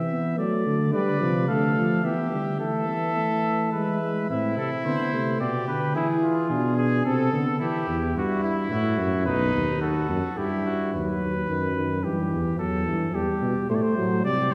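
A classical, imitative canzona for brass ensemble in A minor, this short cut from a longer piece moves at 109 BPM in a straight 3/4, lively yet stately in mood. A clear trumpet carries the melody throughout, while a second, brighter trumpet enters at 0.9 seconds with its own line and drops away at 10.9 seconds before returning briefly at the very end. Beneath them, a dark trombone with light vibrato and a smooth top supplies accompaniment, pausing from 7.6 seconds until the opening idea returns. A dark bass trombone, close-miked and up front with light vibrato, anchors the bass from start to finish. The harmony passes through chords such as Dm, Esus4, Am, F#m7 and B before settling back on Am, and the whole ensemble sits in a wet concert hall reverb heard from further back in the room, giving the brass a spacious, ceremonial glow.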